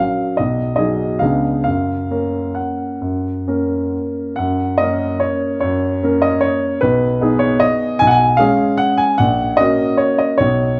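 A 3/4 waltz pulse with free rubato drifts between 128 and 161 BPM in this playful, sparkling classical piano excerpt in F# major. A single upright piano, woody and natural and placed up front, plays alone from 0.0 to 10.8 seconds across a span from A#1 to G#5, moving through chords such as G#m7/B, C#7b9 and F#/A#. Moderate recital hall reverb and a dark production frame the short passage, which states its opening theme twice.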